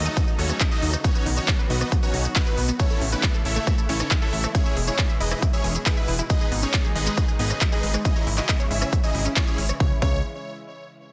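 Huge, bright supersaw chords carry the soaring, bittersweet melody through this uplifting trance drop in C# minor at 137 BPM, phased, tape-tinged and echoing, over a catchy plucky unison lead with vibrato, a nasal chorused pad, a detuned arpeggiated pluck, a fat saturated analog bass pumping against the punchy, up-front electronic kick, and a big-room dance kit of crisp hats, handclaps, rim clicks and shaker, all in a dense, heavily limited mix with little reverb.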